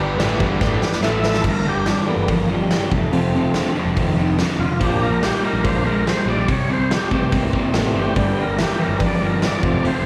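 Classic rock at 143 BPM, sunny and driving, in which a full tonewheel organ with key click and a fast rotary speaker takes a solo from 1.5 seconds over G, F, Bb and C chords, while a crunchy guitar and a hollow-body semi-hollow guitar, both overdriven, play a background riff with slapback echo, a growly picked electric bass and a big acoustic drum kit with bright cymbals and a punchy kick drive underneath, with a drum fill at 0.6 seconds, and a detuned, jangly honky-tonk upright piano sits in the background at the start and again from 8.1 seconds, the mix sounding like a live gig through a venue PA with hall reverb and vinyl crackle.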